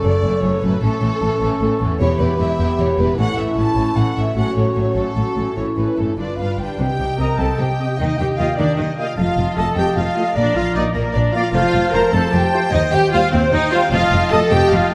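A lush violin section carries a determined, swashbuckling cinematic melody in a straight 6/8 at 101 BPM, over mellow clarinet, hollow flute and a second background violin section, a rich viola section, mellow sustained French horn chords, ringing harp arpeggios and bowed cello and double bass, before the music settles into C dorian at 6.8 s, where a clear oboe joins and a distant trumpet section adds stabs from 7.2 s, all set in a moderate scoring-stage reverb with a dark production and some lossy artefacts in this excerpt from a longer piece.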